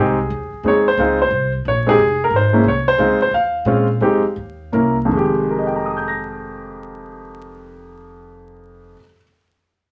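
Smoky and cool, this brief cut from a longer jazz piano trio piece swings in 3/4, with a clear, up-front baby grand carrying the melody across a broad range while a woody, growly upright bass plucks the low line beneath. The pianist moves through rich minor-ninth and major-ninth harmonies, and a moment where the chords drop out before the music slows from 3.0 to 5.1 seconds, settling onto a dark dominant chord before resolving. A damp studio ambience and a layer of vinyl crackle lend the short-sustained piano and the steel-strung bass a dusky, late-night patina.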